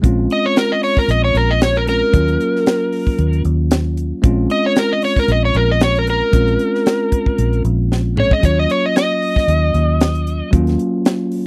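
Straight-eighth soul blues in Bb minor at 114 BPM, mournful and brooding, cut from a longer piece, where an up-front overdriven slide guitar carries the melody over a bell-like tine electric piano, a dark, round, foam-muted fingered electric bass and a tight funk drum kit with a high-tuned snare, with a drum fill at 7.9 seconds, all captured as a dry, close 1970s-style studio recording.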